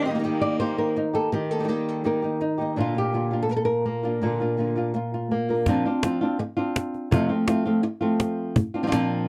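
A dark, fingerpicked flamenco guitar carries the melody up front from the start, joined for the first second by a single bowed cello whose sound is biting and nasal, with light vibrato and an earthy, distant quality. This short excerpt of a proud, festive flamenco piece moves at 166 BPM in a straight 4/4 in Bb major, with the harmony shifting from Eb to Bb. A second fingerpicked guitar, strung with fresh strings, adds warm chordal stabs beneath the lead until the music turns at 5.7 seconds. There a cajon enters close and up front, woody with faint snares, as the chords move through a rootless Bbadd9 to F and back to Bbadd9. The lead guitar continues over this pulse until the excerpt ends at 9.3 seconds. Light reverb sits on a dry, intimate 1970s-style studio sound.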